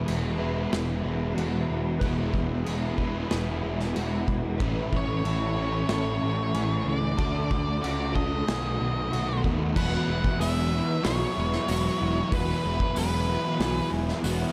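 Blissful and hazy, this shoegaze and dream pop excerpt moves at 93 BPM in E mixolydian, shifting to E major at 9.8 s. Throughout, an overdriven semi-hollow guitar with ensemble chorus and a crunchy overdriven guitar soaked in reverse reverb play riffs. Beneath them, a growling, overdriven bass sits up front, a loose indie kit with a tight kick and pumping small-room sound drives the beat, and a clean, scooped electric guitar with chorus and analog delay plays arpeggios in the background. A dark octave-fuzz lead guitar carries the melody from 5.0 s, and a jingly tambourine joins very quietly at 10.4 s, all within a dry, dark production.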